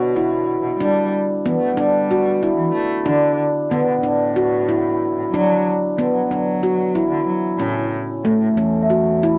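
A veiled, bowed cello line, played by a single muted player with vibrato and soft attack, opens this excerpt of contemporary chamber music together with a delicate, bell-like celesta that sits in the background. At 0.2 seconds a handpan enters up front with ringing, meditative arpeggios in its middle register, its stainless-steel tone struck with the fingertips. The celesta's sweet, felt-hammered figures fall away at 2.9 seconds and return only near the close at 8.8 seconds, while the dark cello holds the bass throughout. The music moves in an uneven 7/8 with a straight feel, passing from Em7 to D and then to A, giving it a shimmering yet restless mood. Light reverb lends the small ensemble a gentle sense of space, with the handpan clearly the most prominent voice.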